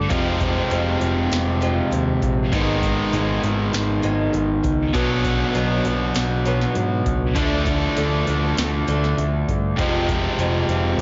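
Two up-front overdriven electric guitars, one crunchy and one biting, drive this dark, cathartic quiet-loud alternative rock excerpt with riffs over a growly, punchy overdriven bass and a booming analog drum machine with a deep kick, crisp snare and metallic hats, while a picked steel-string acoustic guitar plays dusky arpeggios with finger squeak and plate reverb in the background as the chords move from Fm through G#m, Bm and Dm back to Fm, all in a moderate studio room with a rolled-off top end.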